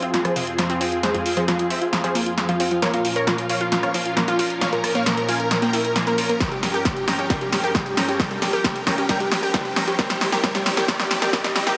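A straight 134 BPM feel drives this bittersweet, emotional uplifting trance build-up, cut from a longer piece, where a punchy, tape-warm analog drum machine plays an up-front fill on hi-hat, rim click and snare, a huge, euphoric supersaw lead carries the melody through a filter sweep, pumping sidechain and delay, a slow-attack filtered supersaw swell holds evolving chords, a bright, wave-folded unison pluck sparkles arpeggios in the background, a very quiet riser creeps in at 3.5 seconds and a distorted, layered electronic kick drum joins at 6.4 seconds, all bathed in a lush hall reverb as the harmony moves from Fm through Bbm and Gm7b5 to C7.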